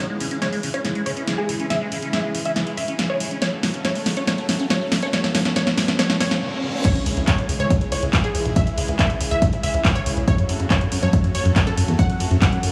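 Light reverb and a small-room digital ambience frame this bittersweet, euphoric slice of uplifting trance, taken from a longer piece and moving at 140 BPM in straight 4/4 in C# minor over alternating C#m and F#m chords. The opening build-up carries a full-bodied, detuned unison pluck melody with tape echo and a filter sweep, laid over a lush, slow-attack supersaw pad, while a squelchy, resonant liquid acid bass plays arpeggios in the background through phaser, subtle chorus and dub echo. A punchy analog drum machine, re-recorded in a large room and placed up front, runs a drum fill of snare, hi-hat, handclaps and crash cymbal, and a very quiet riser and reverse cymbal add lift. After a brief break, the drop lands at 6.8 s with an impact and an electronic kick drum, and the acid bass stops there. From 7.0 s a funky, dark, sawtooth-and-pulse plucky analog bass joins in, and sidechain pumping breathes through the pluck, the pad and both basses.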